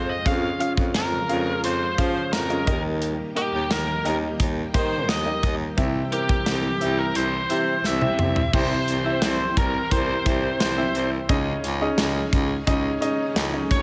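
A straight 4/4 pulse at 87 BPM drives this urgent, nostalgic 1980s-style pop excerpt, with a punchy studio drum kit entering at 0.3 s under gated reverb and playing a fill at 7.8 s, while a biting, overdriven lead guitar carries the melody over polished grand piano accompaniment, a breathy, whispered baritone saxophone takes the bass line with vibrato, and a lush vintage string machine holds chorused chords in the background through Db, Eb, C and Dbsus2, all set in a small, lightly reverberant room.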